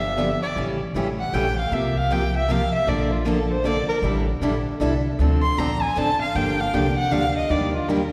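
A bowed violin leads this bittersweet, swinging jazz manouche excerpt, its expressive solo carried by vibrato and portamento up front across the full 8.1 seconds. Beneath it, a woody, thumpy pizzicato upright bass on gut strings sits close, while two picked steel-string acoustic guitars accompany: one a warm parlour guitar, the other a bright, full-bodied dreadnought with fresh strings. The tune moves in 3/4 at 156 BPM in D minor with a swung feel, all bathed in the long, wet reverb of a church or concert hall.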